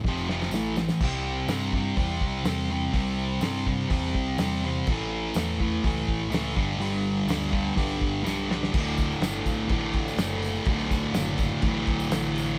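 A drum fill opens this raw, swaggering garage rock excerpt, with a thick, double-tracked fuzz guitar riff and an overdriven fingered bass sounding from the start, and a jingly tambourine slipping in at 0.2 seconds. The guitar sits up front, bright and picked, while the bass growls underneath with a punchy, amped edge. The cloth-damped kit is thuddy and dry, with a fat snare, tight kick and dark cymbals rolled off at the top, moving between hi-hat, ride and crash in a straight 4/4. The riff moves from F5 and A5 onto C, A and G, and a second fill at 8.3 seconds leads into a closing passage on D. Heard as a band playing live in one stone room with moderate reverb, the warm tambourine stays in the background as the rest of the group drives ahead.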